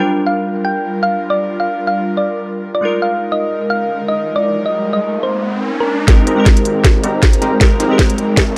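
Future bass at 157 BPM in Ab lydian with a half-time, swung feel, lush and bright: a round, tine-like thumb-piano pluck carries the melody through chorus and dub echo over glassy digital keys and an airy, warbling pad, all pumping to the sidechain, while a background riser enters near 3.9 seconds and at 6.1 seconds a punchy, filter-swept supersaw stab riff, a thick detuned saw bass, an up-front knocking kick and a trap kit with sharp snare and crisp hats drive a build-up with a drum fill, all within a dark, lightly reverberant mix.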